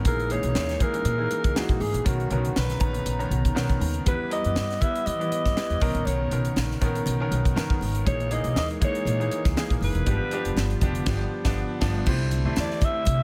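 A growling alto saxophone carries the melody from 0.1 seconds, raspy and gritty yet set distant in the room, over a glossy, urban 1980s jazz-funk pop groove in B major at 120 BPM with a light sixteenth-note swing. A crisp, up-front fusion kit with a punchy kick and high-tuned snare drives the band, joined by a woody, thumpy pizzicato upright bass, a clear baby grand piano with audible action noise and a subtle chorus, very quiet bright congas, and a hollow, flute-like pad that warbles softly underneath. The chords move from a rootless F#13 through Bmaj9, Em and G7, the piano adds a fill at 3.3 seconds, and a band accent at 11.1 seconds leads into a new section on C69 at 12.1 seconds before this excerpt is cut off.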